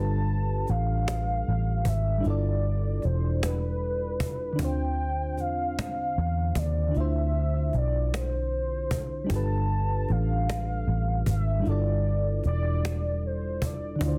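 A slow, straight six-eight sway carries this yearning, sultry R&B fragment, with a snappy acoustic cajon joining at 0.7 seconds over a dark, round, foam-muted electric bass that sits up front. A mellow FM electric piano adds soft, warbling vintage chords with a noise layer, chorus and plate reverb, moving from G13 to Dm9 and back. Above it, a velvety detuned sawtooth synth lead sings sustained, gliding lines through chorus, plate reverb and digital delay, all held in a dense, heavily limited modern master.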